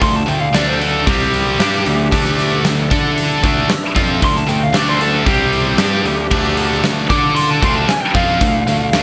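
A dark, overdriven lead guitar solo leads this menacing hard rock excerpt in D minor at 114 BPM, cutting over two bright, scooped high-gain rhythm guitars grinding out a distorted riff, one of them sitting in the background. Beneath, a round, fuzzed-out picked bass and an up-front arena drum kit with a fat snare, punchy kick and pumping hall sound drive the straight 4/4 feel. A very quiet, shimmering retro pad with chorus and a slow attack holds sustained chords behind the aggression as the harmony moves between Dm and C5 across the 9 seconds.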